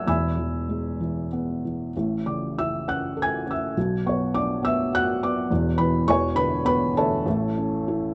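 A felt-muted upright piano plays alone for the full 8.1 seconds of this short classical excerpt, its soft, mellow tone sitting up front and close, with the mechanical noise of the action clearly audible. The lyrical, moody solo moves in a flexible, rubato three-beat lilt across a span from E1 to G#6, passing from E through A and B minor back home to A. Light reverb and a dark production give it an intimate, brooding air.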